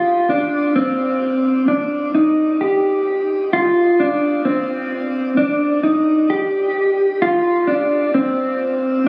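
Ethereal and hazy, this short dream pop excerpt drifts at a slow 65 BPM in a straight 4/4. A single mellow electric guitar carries the whole 9.1 seconds alone, fingered and clean with a dark, compressed tone that sits up front. Its line stays in a narrow span from C4 to G4, dressed in lush chorus and delay. A shimmering reverb with a long tail of 5.6 seconds surrounds it, giving the sound a suspended glow. The capture has the roomy character of a phone recording in a club, which adds to the fog.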